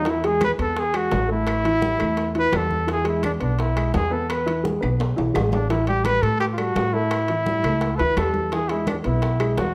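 Heard in a large studio with moderate reverb, this lively, sunny excerpt of Afro-Cuban jazz moves at 170 BPM in straight 4/4, centred on E mixolydian and tuned to A4 = 438 Hz. Up front, a mellow trumpet carries the solo melody with light vibrato and scooped notes, over a growly, thumpy pizzicato upright bass on steel strings and an upright piano with short sustain supplying the accompaniment through E, A5 and A7 chords. Tight, high-tuned bongos, bright damped congas, ringing metal-shell timbales and dry, woody claves fill out the percussion, with a drum fill at 4.8 s.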